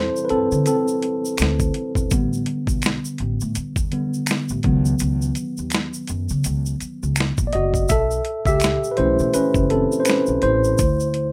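A loose, swung sixteenth-note groove in four sets a soulful, late-night neo-soul and R&B mood across this short cut from a longer piece. A dusty, sampler-style drum kit sits up front with a thumpy kick, a medium-tuned snare, hi-hat and finger snaps, its compressed, gritty sound giving the beat a lived-in feel. Underneath, a woody, dark upright bass with gut strings is plucked pizzicato, while a tube shaker and group handclaps add a small-room acoustic layer from 0.2 seconds. The tine electric piano takes the lead as a solo throughout, sounding worn and slightly out of tune, lightly overdriven through built-in speakers and bathed in plate reverb. Its harmony drifts through suspended ninth chords before settling on a D7sus2 at 10.8 seconds, and the whole track carries a rough home-demo character in a modest small-room space.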